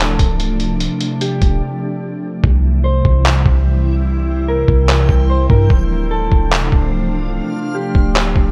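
Melancholic and hazy, this 8.5-second excerpt of atmospheric cloud-rap moves at 147 BPM in a half-time feel in D minor, with a mellow, clean electric guitar melody filtered and trailed by tape echo over a glassy FM pad whose chorused, ethereal chords drift from Dm7 to C and back. A soft, round 808-style bass and an up-front, muffled, sampler-style drum kit of thumpy kick, handclaps and hi-hat carry the groove, pausing for a break at 1.6 seconds, after which the hi-hats stay muted. From 3.6 seconds a faint, reversed granular texture swells in with dreamy reverb, deepening the digital ambience.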